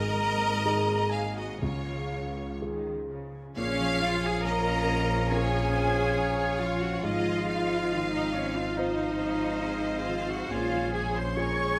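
A moderate scoring-stage reverb surrounds this bittersweet, sorrowful cinematic film-score excerpt in Bb minor, moving in a rubato 4/4 around 60-71 BPM, where a clear, focused violin section carries the melody over airy flutes, a lush background violin line, a rich viola section, ringing thumb-plucked harp arpeggios and a dark, intimate grand piano with audible action noise. A dark, expressive cello section and a rich double bass section anchor the bass. At 3.6 s, as the harmony turns to Bbm7, a clear oboe and a close-miked clarinet add classical-style second lines while a mellow French horn section holds sustained chords in the background.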